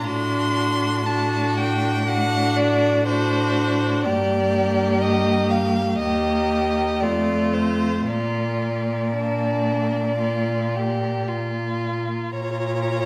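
A focused, vibrato-laden first violin sings the lyrical melody up front, high in its register, while a second violin traces a smooth, even inner line. The viola adds a soft-attacked, expressive accompaniment with gliding portamento from a distance, and the cello anchors the bass with steady bowing, all four strings rich in tone and playing from 0.0 to 13.1 seconds. This warm, rubato passage from a slow romantic string quartet movement sits in a reverberant recital hall, moving through G minor, E-flat and F to a B-flat resolution before darkening to B-flat minor at 12.3 seconds.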